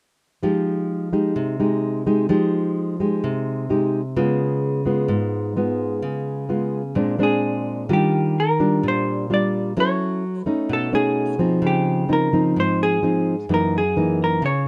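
Close, detailed microphones and light reverb frame this sunny, sophisticated bossa nova at 129 BPM, cut from a longer piece. A thumb-plucked nylon-string guitar sits up front from 0.4 seconds, its classical tone carrying audible finger squeak as it moves through lush chords such as Fm9, Ebmaj9 and Gb13. At 7.2 seconds a dark, clean electric hollow-body jazz guitar joins with a picked melody, also placed up front, bringing a vintage character that carries into the second section.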